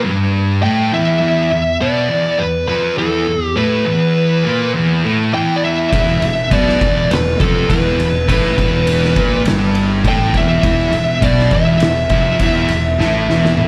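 A straight 4/4 pulse at 102 BPM drives this brooding, heavy slice of stoner and doom metal in E minor, cut from a longer piece and resting on a single Em chord. Two thick fuzz guitars grind out the riff from the start, one dark and one warmer, both distorted with a slapback echo. At 0.6 seconds a compressed fuzz lead guitar enters up front with a melody high above them, its slapback echo joined by analog delay. At 5.9 seconds a fingered electric bass arrives, overdriven with tube saturation, along with an oversized low-tuned drum kit whose gritty, saturated sound has a punchy kick, fat snare, ride cymbal and toms set in a bright stone room. A drum fill from 13.0 seconds closes the passage, and the whole performance is heard as a live gig through the club's PA, with light reverb in the room.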